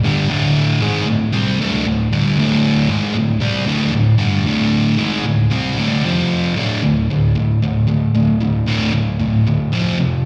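A sludgy, overdriven electric guitar plays alone and up front, picked and double-tracked, with tape echo on its heavy power chords moving between D5 and F5. This menacing rock excerpt sits in a straight 4/4, returning to D5 at 6.6 seconds as a new section begins. It sounds like a live gig heard through the venue's PA, with a light recital-hall reverb around the guitar.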